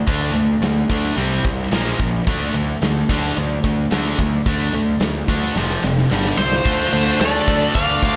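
Driving and menacing, this hard rock excerpt in D minor charges along at 110 BPM in a straight 4/4, with a crunchy overdriven guitar in the background and a bright, tight distorted guitar up front with slapback echo both playing the riff, over a growly fuzz bass and a huge arena drum kit with punchy kick and bright cymbals. A drum fill at 5.6 seconds leads into a new section, and at 6.4 seconds a high-gain lead guitar enters up front with the melody while a dark octave-fuzz lead guitar adds a second line beneath it. The whole sits in a big arena sound with wet hall reverb.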